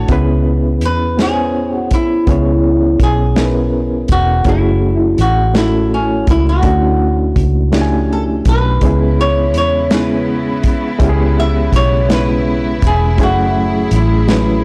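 In a slow, straight 6/8 at 55 BPM, this late-night, yearning R&B excerpt sets a boxy, fingerpicked flamenco guitar melody with audible finger squeak and slapback echo from 0.9 s over a gritty, reedy electric piano with fast tremolo through a combo amp, a dark, round muted fingered bass with tube saturation, and a smooth small-room soul drum kit with a tight kick, while an intimate bowed string section with soft sul tasto attack returns at 8.8 s beneath C#m7 and F#m9 chords, all in a blown-out, overdriven recording with light reverb.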